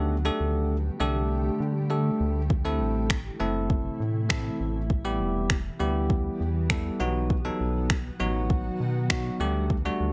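This excerpt opens with a bell-like tine electric piano, bright and clean, sitting up front over a blurred, granular pad that drifts in a hazy cloud of its own reverb, while a round analog bass anchors the low end with deep, dark sustain. It is a bittersweet yet confident dance-pop piece in E minor at 100 BPM in a straight 4/4, moving through Dsus4, Am, Em and B before returning to Dsus4. The pad and bass both pump against the sidechain, giving the sustained chords and low notes a breathing pulse. At 2.5 seconds a smooth R&B drum kit enters with finger snaps and a soft, overdriven kick, electronic and produced yet given the close feel of a small room, and it drops out at 9.8 seconds. The mix stays dry and forward overall, with only the pad carrying a veil of reverb behind the up-front piano, bass and drums.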